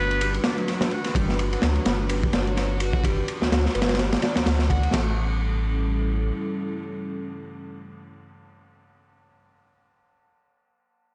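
Crunchy, punchy breakbeat drums of kick, snare and dark ride cymbal drive this funky, playful 127 BPM breaks excerpt in A mixolydian with a thick, saturated sub bass, while a screaming, guitar-like overdriven synth lead with phaser and delay plays a riff in the background until 5.2 s and a moody, detuned analog pad with sidechain pumping holds sustained chords moving from Gmaj7 to A7 at 4.9 s, all captured in a small room on a gritty cassette-tape recording.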